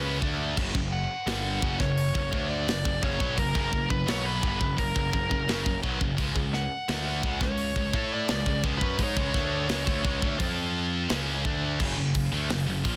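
Dry and dense with a heavily limited modern master, this dark, heavy metal excerpt moves at 86 BPM in a straight 4/4, with a growly fuzz bass and a gritty, mid-forward acoustic drum kit sitting up front, its tight kick and rolled-off top entering at 0.2 seconds. Two bright, picked high-gain guitars churn out the riff in the background over chords moving from C#5 to F# and briefly F5. A nasal, overdriven lead guitar with a parked wah and tape echo carries the melody until 10.4 seconds.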